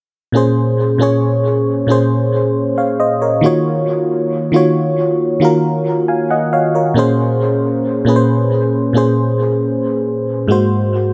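R&B at a slow 68 BPM in Bb minor, this late-night, longing excerpt features a solo FM electric piano with a glassy, bell-like attack and vintage warble, sitting up front with chorus and dub echo in a light reverb as it moves through Bbm9, Ebm9 and back to Bbm9 before landing on Ab9 near 10.5 seconds.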